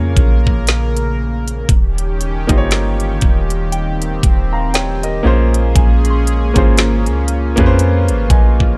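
A slow, swung 59 BPM groove in 4/4 drives this late-night, sensual contemporary R&B excerpt in Bb dorian, with an up-front trap kit of knocking kick, woody snare and crisp hats arriving at 0.2 s over a deep, round 808-style bass. A natural-sounding baby grand piano and a shimmering, retro pulse-width pad with chorus carry the harmony from Bbm7 to Eb7 and back. A pure FM synth bell with chorus, phaser and delay sits in the background from 3.7 s to 7.6 s, all within a digital ambience.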